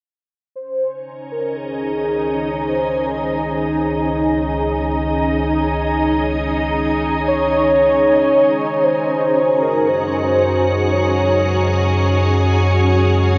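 This serene, weightless ambient passage in free time opens at 0.6 s with a velvety synth lead carrying the melody between Ab4 and Db5. Its detuned sawtooth tone is smoothed by chorus, vibrato and a diffuse ambient delay. Soon after, an organ-like pad adds sustained chords, pure and bright, built from sine and triangle tones with a sub octave, a slow attack and ensemble chorus, sitting up front. At 2.1 s a deep, ominous drone rumbles in underneath, its dark sawtooth and triangle layers colored by phaser and reverb. The harmony rests on Dbsus2 before moving to Gbsus2 at 8.8 s, and the lead falls silent at 11.9 s while pad and drone sustain, all wrapped in a huge, wet reverb within a dusky production that is cut from a longer piece.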